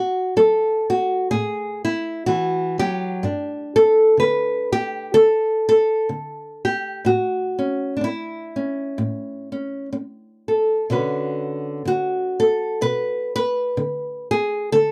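Lightly swung eighth notes in a slow 4/4 carry this gentle, pastoral folk fragment of about 15 seconds, played on a lone fingerpicked nylon-string guitar that ranges from G2 to B4. The harmony moves from a rootless D through Gsus2 and A to Bmadd9, and the guitar sounds small, warm and up front. The dry, close recording has a 1970s studio character and moderate booth ambience.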